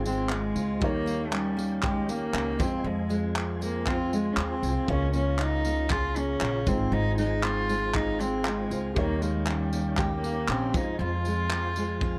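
Close, detailed and nearly dry, this reflective, tender acoustic pop excerpt in F minor at 118 BPM with a 16th-note swing sets a reedy, gut-string bowed cello up front over fingerpicked bright steel-string guitar, woody pizzicato upright bass, a soft felt-muted upright piano, a flute-like tonewheel organ shimmering with chorus vibrato and fast rotary speaker, and a loose, gritty indie drum kit of kick, handclaps and tambourine that enters at 0.1 seconds and closes with a fill at 12.0 seconds, all moving through Ab6, Eb7, Fm and Db6 chords.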